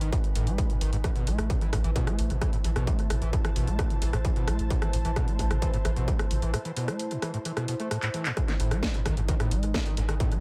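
Driving peak-time techno at 131 BPM with an industrial, hypnotic mood, cut from a longer piece. It moves between G#m and Am under a squelchy, screaming acid line with distorted sawtooth bite and dub echo, a thick, saturated sub bass with sidechain pumping, and an ethereal, detuned pad with ensemble chorus and its own reverb. A distorted kick sits up front beside a techno kit of cracking snare, handclaps, rim click and hi-hat, all within an echo-heavy mix, and a break from 6.5 to 8.4 seconds ends in a drum fill starting at 8.0 seconds.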